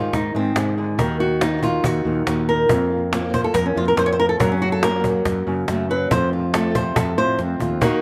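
A fingerpicked flamenco guitar opens at once with a dramatic, fiery solo melody, sitting up front and reaching from F2 up to Db5 in F phrygian dominant at 141 BPM in a straight 4/4. Behind it, a second fingerpicked flamenco guitar plays stabs from the background, its quieter attacks trailed by a slapback echo. A mellow fretless electric bass holds the low end between Eb2 and A2 with a dark, round, direct tone, while a woody cajon with faint snares keeps the percussion going and briefly breaks into a fill from 7.4 to 7.8 seconds. The harmony moves from Ab through Ebm, Fsus4 and Gb before settling on F. The sound is dry and close, with little reverb and an open-air feel, and this short excerpt is cut from a longer piece.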